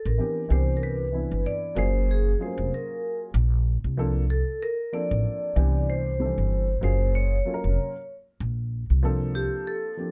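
A dry, intimate-sounding cut from a longer hip hop and jazz-hop piece, relaxed and easygoing at 95 BPM with a gentle 16th-note swing, where a ringing, metallic vibraphone with slow motor vibrato carries the melody up front, a thumpy, woody pizzicato upright bass holds down the low end, and a dark, worn, slightly detuned upright piano with audible action noise sits further back, all moving through lush major-ninth chords beginning on Bbmaj9.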